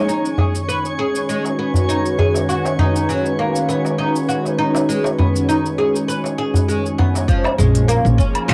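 Organic downtempo with a mystical feel, this fragment of a longer piece opens on an airy, breathy pad carrying a filter sweep and sidechain pumping, while a bright, double-stringed oud plucks arpeggios through a low-pass filter and analog delay over a gently swung groove. A twinkling granular shimmer, crisp electronic hats, snaps, shaker and woodblock, and a deep metal-shelled darbuka fill out the G#m and B harmony. At 7.3 s the chords move to A#m7 as a gritty, thumpy kick arrives, joined at 7.6 s by a growly pizzicato upright bass, all captured with a cassette home-recording character in a small, wet booth.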